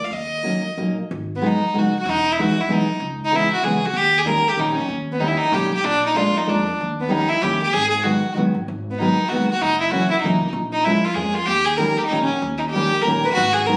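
A 3/4 musette waltz at 190 BPM with a swung, rubato feel carries a whirling, nostalgic mood through this short extract from a longer piece. A single clear violin sits up front with an airy, floating bow, while a dark, full-bodied fingerpicked steel-string guitar and a woody pizzicato upright bass join within the first half-second and move through minor-seventh and dominant harmonies. Moderate studio reverb surrounds the parts, and the whole was recorded on a phone in the room.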